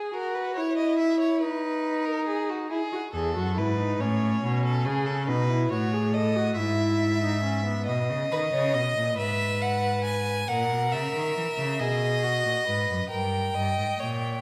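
A rich, focused violin and a smooth, even viola open this joyful, lively baroque-style fugue for string quartet in 6/8, with a bowed cello with a smooth top entering on the bass at 3.1 seconds, the viola stopping at 7.9 seconds, and a clear vibrato violin taking up the melody at 8.3 seconds, each single player heard up front in a recital hall's lush reverb, in this fragment cut from a longer piece.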